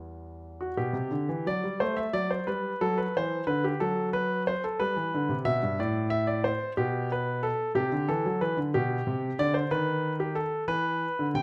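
A solo concert grand piano opens on an E minor chord in this introspective, grave baroque-style suite movement in G major, moving in a rubato 6/8 at 61 BPM in dotted quarters through harmonies such as G/B, Am13 and Bm7 before settling on a bare E5 at 10.7 seconds, its intimate, polished tone, deep bass, long sustain and audible action noise captured up front by close, detailed microphones within a moderate recital hall reverb, in a passage cut from a longer piece.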